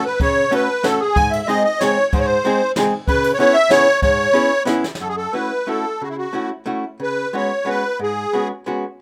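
A musette waltz in a rubato three-beat feel, this short excerpt from a longer piece carries a whirling, nostalgic mood. The musette accordion sings the melody up front, its reedy, shimmering tone close-miked, dry and full. Beneath it, a miked and amplified hollow-body archtop guitar plays the accompaniment with a dark, clean, picked electric sound that also sits forward in the mix. A jazz kit played with brushes joins at 0.2 seconds, with an airy, polished small-room character, dark cymbals, a medium-tuned snare and a boomy kick, and it closes its part with a fill at 4.8 seconds before dropping out at 5.0 seconds as the harmony moves into a new section. The whole has the light reverb and small-room ambience of a rough home demo.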